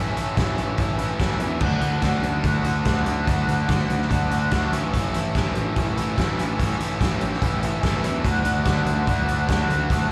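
Heard through a club PA at a live gig, this short indie rock cut has little reverb, so the band sounds close and immediate. A bright, overdriven electric guitar sits up front playing a picked riff, its raw garage tone given a slapback echo. Beneath it, a growling picked electric bass, direct and amped with its own overdrive, holds the low end from the opening moment. The acoustic drum kit enters at 0.2 seconds with punchy kick, a medium-tuned snare, hi-hat and crash, its saturated, gritty sound carrying a rolled-off top and the colour of a stone room. The harmony moves simply between A and D, returning to A at 4.7 seconds and to D at 8.2 seconds, which gives the piece a jangly, carefree mood.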